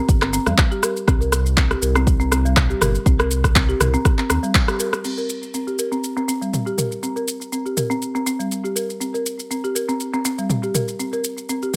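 Spiritual and warm, this afro house excerpt rides a lightly swung groove led by a woody, rustic folk marimba playing dry, up-front arpeggios with sidechain pumping, a low-pass filter and digital delay. A smooth, dark synth bass glides with portamento and pumps alongside a deep, tape-colored electronic kick, both dropping away around a band accent at 4.5 seconds. The layered deep house kit of handclaps, rim clicks, shaker, toms and crash cymbal carries on, while from 5.0 seconds a filter sweep shapes the marimba within light reverb and digital ambience.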